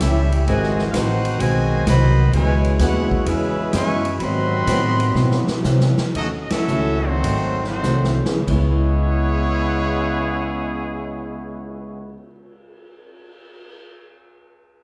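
A clear, softly attacked trumpet section carries the melody over a warm trombone second line, a background trombone pad, a dark, clean archtop guitar, a woody upright bass up front and a punchy, swinging drum kit in this brassy, sultry big band swing passage cut from a longer piece, which slows from 4.2 to 8.5 seconds with drum fills and a band accent at 6.4 seconds before a very quiet, slightly detuned upright piano enters at 8.3 seconds, all heard from further back in a reverberant large studio.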